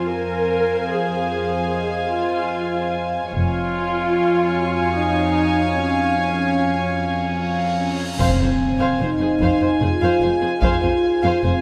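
Mysterious and uneasy, this excerpt of a cinematic suspense score moves at 74 BPM in 3/4 in F minor, with sul tasto violin sections floating a high melody and second line over a woody viola accompaniment and intimate cello bass, while a very quiet vibraphone with soft mallets rings beneath. Dark double basses touch in briefly at 3.3 seconds as the harmony shifts to Db over F. A huge, bright cymbal swell builds from 7.4 seconds, mellow French horns begin holding chords at 7.8 seconds, and the swell breaks into an impact at 8.2 seconds. There, close, dry taiko drums strike with hard sticks and background timpani sound, all set in a vast, echoing cathedral reverb.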